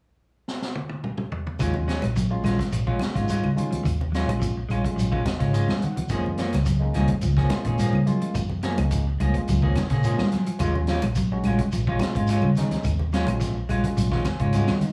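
Defiant and driving, this afrobeat excerpt opens with a fill on a vintage drum kit at 0.5 s, its high-tuned snare and punchy kick sitting mid-forward with a rolled-off top, before the full band enters at 1.6 s over an Ebm11 to Gbmaj9 and back progression. A dark, round, foam-muted fingered bass leads the mix, while a barky, lightly overdriven tine electric piano comps through a combo amp and adds recurring fills. A clean guitar with analog chorus plays background arpeggios, and a hollow-body semi-hollow guitar adds picked stabs. Bright congas, a grainy shekere set distant in a large room and very quiet woody claves fill out the percussion, all under light reverb, small room ambience and a faint mains hum.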